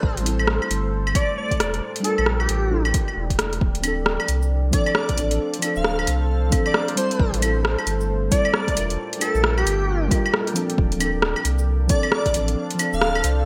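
This nocturnal, melancholic future garage excerpt opens with an airy, dreamy lead, muted felt-like synth keys, a deep ambient pad, a round sine sub bass and an overdriven electronic kick, with a deep house kit of metallic hi-hats, cabasa, claves and rim clicks joining at 0.2 seconds. The groove swings its sixteenths, while the lead carries the melody in soft, detuned unison tones with vibrato, chorus and digital delay. Beneath it, the intimate keys add vintage 12-bit sampler grit, a filter sweep and delay, and the pad spreads slow-attack, sawtooth-and-sub-octave chords through its own reverb. The pad, the keys and the up-front sub bass all pump against the sidechain as the harmony moves from Am7, Bb6 and A7sus4 towards Dm7. A lush hall reverb and bright 1980s-style digital production frame the piece, and the kick drops out at 12.3 seconds.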